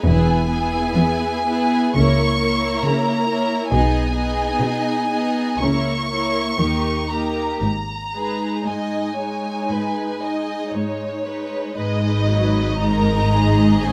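This classical slow romantic movement for string orchestra, a short cut from a longer piece, moves in a rubato 4/4 at roughly 53-70 BPM in G# minor, with a melancholic, elegiac mood. The first violins carry the melody in a warm, focused voice with a smooth top, sitting up front. The second violins weave a rich second line beneath them, while the violas supply accompaniment with an even, vibrato-laden tone. Cellos and double basses share the bass, the cellos rich and smooth, the basses entering at 0.1 s with an expressive, bowed depth. The harmony passes from E through A#dim/C# and G#m/B to a D#7 that settles on G#m at 7.6 s, and a new section begins at 11.8 s. Close, detailed microphones and a dry room give the lush ensemble an intimate clarity.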